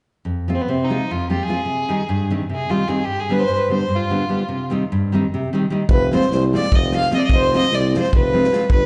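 Heard live through a club PA with light reverb and rolled-off highs, this fiery, virtuosic Balkan wedding-band fragment in free time and F Dorian sharp 4 opens at 0.2 seconds with an up-front, full-bodied fingerpicked nylon-string guitar carrying a slapback echo beneath a rich, focused bowed fiddle with light vibrato, moving through Fm, Cm and G, before a distant, roomy tuba with vibrato and an acoustic drum kit with a punchy kick and medium-tuned snare join at 5.9 seconds.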